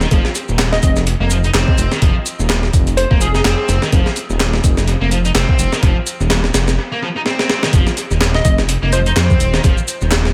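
The mix is dry and echo-heavy, with dub echo trailing off the drums, guitar and lead in this funky, swaggering breakbeat cut from a longer piece. Up front, a gritty, compressed sampler-style kit drives a swung groove with a thumpy kick, a high-tuned snare and hi-hat, while a tape-warm layer of electronic shaker and handclaps sits in the background. A dark, detuned saw bass rumbles deep and saturated beneath it, and a bright, double-tracked fuzz guitar riff adds tube-saturated bite. A punchy, catchy unison lead with an AM radio tone and a filter sweep enters at 0.7 s. A break at 6.8 s and a drum fill set up the drop at 7.7 s, where the plucky lead returns briefly over the full groove.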